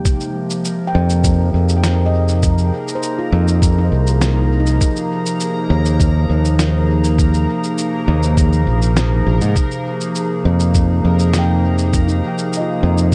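Ambient dub at 101 BPM in F minor, this spacious, deep excerpt drifts between Fm7 and Ebsus4 over a warbling, nostalgic lo-fi pad with chorus and reverb, while a bubbling, resonant stepped-filter texture glimmers quietly above. A growly, up-front fingered electric bass anchors the low end alongside a muffled, thumpy, pitched-down electronic kick and a compressed electronic cabasa and snare, both carrying the boom of a large room. A ringing, meditative handpan with tape echo plays arpeggios from 0.9 to 6.9 seconds and returns at 11.4 seconds.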